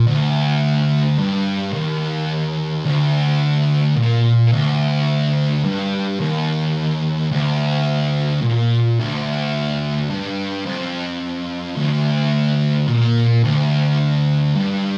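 Metal with a sludgy, heavy mood, this excerpt is carried entirely by a thick fuzz guitar playing alone for the full 15 seconds, picked low between D2 and Bb2. The distorted electric tone is warm and double-tracked, sitting up front in the mix. A wet, large studio reverb with a digital ambience surrounds it, alongside a small-room reverb, giving the riff a cavernous weight.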